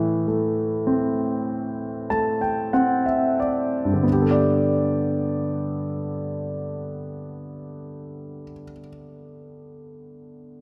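A clear, intimate concert grand piano opens this heartfelt, emotional pop excerpt in G major at a slow 43-52 BPM in 4/4, slowing through its Am opening with a fill from 1.5 s before settling onto a Gadd9 at 4.1 s, its deep bass, audible action noise and long sustain sitting up front in a lush hall reverb within a rough home demo mix.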